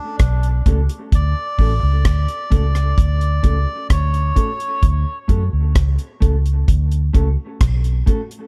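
Laid-back and hazy, this short dub reggae excerpt moves at 65 BPM in D major, opening on a rootless Dmaj7 that settles into Dmaj7 at 1.1 seconds. A reedy, breathy melodica carries the melody with dub echo until 4.9 seconds, while a dry, tight-kicked acoustic drum kit of kick, hi-hat and rim click sits up front beside a dark, round, punchy foam-muted electric bass. A mellow, clean, compressed electric guitar fills in the accompaniment through its own dub echo, all set in a small, echo-heavy room.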